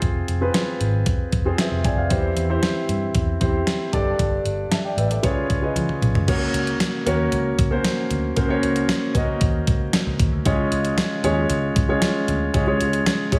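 Nostalgic and romantic, this 1980s-style pop passage in C major moves at 115 BPM in a straight 4/4, cut from a longer piece. An up-front concert grand piano with deep lows carries the chords from Fm through C/E, Gsus2 and Db7. A dark, round, foam-muted picked electric bass sits beneath, while a sampler-style 12-bit drum machine brings a thumpy kick, fat snare, hi-hat, tambourine, toms and crash. A drum fill at 5.8 seconds leads into a new section at 6.3 seconds that settles on Gb/Db and then Db, all framed by a recital-hall reverb that lends a big arena sound.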